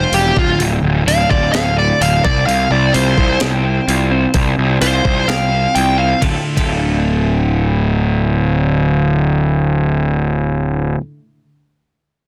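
A dry, dense and heavily limited master frames this brief cut from a longer quiet-loud alternative rock piece in D minor, moving at 128 BPM in a straight 4/4 with an angsty, brooding mood. Up front, a dark, distorted bluesy lead guitar plays a picked solo from the opening, ranging from F4 to G5 over Dm and Csus4 chords until it stops at 6.2 seconds. Beneath it, a bright, growly fuzz bass sits forward in the mix, picked and overdriven in the low register. In the background, a clean, twangy twelve-string electric guitar plays compressed arpeggios bathed in lush chorus. A sampler-style breakbeat kit with a thumpy kick, medium-tuned snare, hi-hat and ride adds a gritty, tape-tinged pulse until 6.7 seconds. The second section begins on Dm at 6.2 seconds, with the bass and twelve-string continuing on after the drums drop out.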